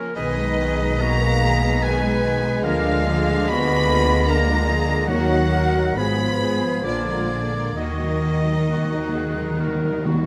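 A slow romantic classical movement for symphony orchestra in E-flat minor, this melancholic, elegiac passage moves in a rubato 3/4 at roughly 64-78 BPM and is cut from a longer piece. The violin section carries the melody with a lush, focused vibrato, while a second violin line, the clarinet, the airy concert flute and the oboe weave secondary lines around it. The oboe, warm and punchy with a smooth top, plays as a solo voice, and the clear clarinet sits in the background. Very quiet violas and a mellow bassoon fill the accompaniment, the cello and double bass sections anchor the bass, and a dark, distant horn section holds sustained chords. The harmony turns from Abm/Cb through Bb7/D to Ebm at 5.1 seconds, where the close, dry timpani enter with hard mallets on E-flat, adding an articulate fill from 7.8 seconds as the music settles back on Ebm. A moderate scoring-stage reverb lends the ensemble depth.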